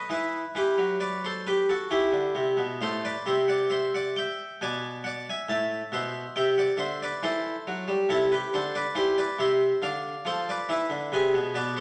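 A solo harpsichord in the Flemish style opens this excerpt from a baroque-style suite movement, its plucked, brilliant tone brightened by octave strings and placed up front in a reverberant recital hall. Flowing and solemn in a rubato triple metre, the 11.8-second passage moves through minor harmonies and a diminished chord before settling on E at 10.7 seconds, tuned to A4 = 439 Hz.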